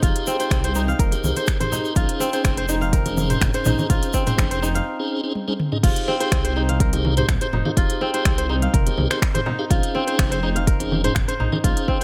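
Afro house at 124 BPM in F minor with a warm, earthy mood, where bright fingerpicked kora arpeggios ring up front with dub echo and sidechain pumping, a piping tonewheel organ plays stabs through a fast rotary speaker with gritty 12-bit sampler character, a dark detuned saw bass rumbles underneath, and a deep electronic kick anchors an afro-pop kit of crisp hi-hats, finger snaps, toms and crash cymbal, joined by damped, low-tuned congas and a grainy egg shaker in the background that stops at 4.8 seconds, before a short break and drum fill lead into the drop at 5.8 seconds over Fm7 and Bbm11 chords in a dry mix.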